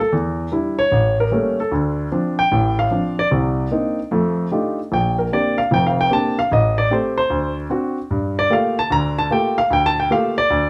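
Solo jazz in G minor at 150 BPM, swinging and late-night in mood, carried entirely by a grand piano that is present, polished and up front, with short sustain across a range from F1 to Bb5. The chords move through rich extended harmony, from Em7 and A7b9 through Cm9, F13 and Bb69, then settle via Am7b5 and D7 onto Gm9 at 8.1 seconds. A wet club reverb places the listener further back in the room across this 10.7-second cut from a longer piece.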